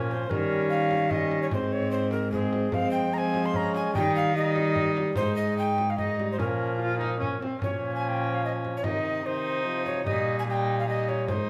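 This classical, Renaissance-style consort dance moves at 148 BPM in a straight 3/4, with a courtly yet rustic mood in Bb dorian. An alto recorder carries the melody, its airy, wooden tone up front with a crisp, chiffing attack and straight tone. Beneath it a single bowed viola plays a reedy second line with light vibrato in period style. A solo trombone gives warm, vibrato-tinged accompaniment. A close, rich cello, also bowed by one player in gut-string period style, holds the bass. A small, bright frame drum enters at 0.1 s with a compressed, saturated edge, while the ensemble sits in a reverberant stone room heard from further back. The harmony moves through chords such as Eb7, Ab, Fm and Bbm before a new section begins at 7.6 s and passes through Cm to a closing Eb/Bb, where this cut from a longer piece ends.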